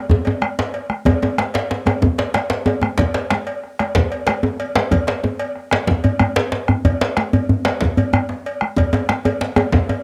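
Driving and powerful, this short cut from a longer West African traditional drum ensemble piece moves at 124 BPM in a straight 12/8 feel. It opens with a drum fill over the first 1.1 seconds before settling into the main groove, which runs to the end. Two djembes carry the core of the sound, both deep and played with soft hands: one sits up front and leads the mix, while the other rests further in the background. Beneath them a round bombo anchors the low end, and high-tuned congas add a damped, thick-skinned tone heard close to the microphone. A metallic cowbell enters at 0.2 seconds and rings lightly through the ensemble. The whole performance has the modest booth ambience of a home recording on cassette.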